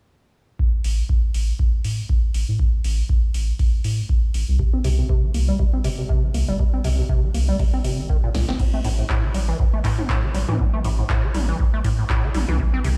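A swung 4/4 pulse at 120 BPM drives this gritty acid house excerpt, where an overdriven, up-front electronic kick and an electro analog drum machine with punchy snare, handclaps, metallic hats, toms and crash, both re-recorded in a large room, sit under a round, wave-folded analog bass that pumps against the kick, while from 4.6 s a rubbery, resonant acid bass riff with 12-bit sampler grit and analog delay plucks over a C5 chord before a drum fill at 8.3 s opens the next section.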